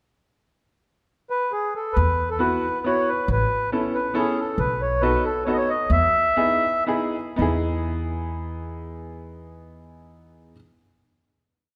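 A moderate concert-hall reverb surrounds this complete musette waltz in E major, a whirling, charming piece in 3/4 at 116-140 BPM with a light swing and rubato that slows down before the final chord. A mellow, reedy accordion sits up front with a round, dark single-reed tone, carrying a motif-based melody in period phrases from 1.3 seconds, while a pizzicato upright bass on steel strings plays woody root-and-fifth notes on the main beats from 2.0 seconds. A bright, slightly detuned upright piano with audible action noise adds close-voiced backbeat chords, moving from Esus2 through Aadd9 and B7 to a closing Emaj7 that arrives at 5.9 seconds.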